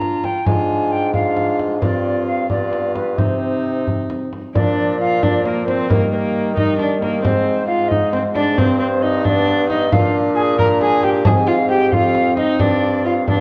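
A mellow, hollow alto recorder carries the melody in this rustic, solemn renaissance-style consort dance, its pure wooden tone marked by vibrato, tongued chiff and rolled-off highs. Beneath it, an up-front viola played by one bowed player adds a reedy second line with gut-string, period-style colour and light vibrato. A distant, roomy trombone fills in the accompaniment, while a clear bassoon anchors the bass and a small, bright frame drum keeps the steady 6/8 pulse. All five parts play together from start to finish, moving through a sombre progression that opens on Ddim/Ab, settles on Cm at 3.2 seconds, and closes on Gsus4 at 12.6 seconds. The whole consort sits in a wet recital hall with a 1.8-second reverb, and a worn cassette-tape character gives it a warbling pitch drift, as in a fragment cut from a longer piece.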